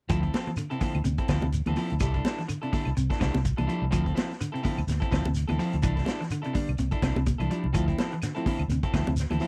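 A funky, driving afrobeat groove opens on a dry, close 1970s-style studio sound, with a vintage kit's punchy kick and rolled-off top up front beside a dark, round fingered bass, a clean picked guitar playing arpeggios with subtle chorus, a slightly broken-up, scooped guitar firing stabs, a grainy shekere, and woody claves and bright, damped congas in the background, all moving between Dm9 and C69 until a drum fill at 7.3 seconds brings in a gritty, reedy overdriven electric piano through a phaser at 7.7 seconds.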